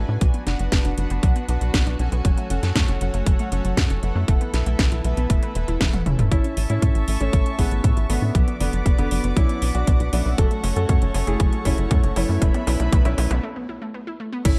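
A straight 4/4 groove at 118 BPM drives this romantic, playful italo disco excerpt in A major, anchored by a punchy, up-front electronic kick and a tight, driving sequencer bass with tube saturation and a dark sawtooth-and-square bite. A house drum kit adds a cracking snare, metallic hats, toms and crash cymbal, with high-pass filtering on the hats, snare, toms, cymbals and room, and a drum fill at 5.8 seconds leads into the second section. Behind them, a round, detuned analog pluck spins arpeggios through chorus and digital delay with a filter sweep, while bold, nasal synth brass stabs with chorus and vibrato, and a gut-string chamber section holds reedy sustained chords in a period style. At 6.3 seconds a clear, worn concert grand piano enters with the melody, its short sustain softened by a low-pass filter and trailed by digital delay. The chords move through Bm, F#m and Esus4 before landing on A and cycling again, and a break at 13.4 seconds ends the passage. 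Light reverb and tape-tinged, dark production give the whole a warm sheen.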